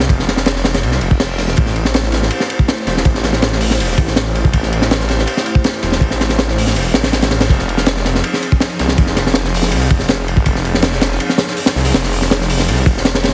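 A heavily compressed, radio-like sound with light studio reverb frames this nostalgic, atmospheric drum and bass cut from a longer jungle piece. Up front, a crunchy, gritty breakbeat kit with a tight kick, high-tuned snare and dark cymbals drives alongside a thick, menacing detuned saw bass whose tones beat against each other. A very quiet reverse cymbal at 1.0 s leads into an airy, breathy pad with chorus that sits mellow in the background from 1.6 s, holding Am7 before shifting to Fm7 at 7.5 s.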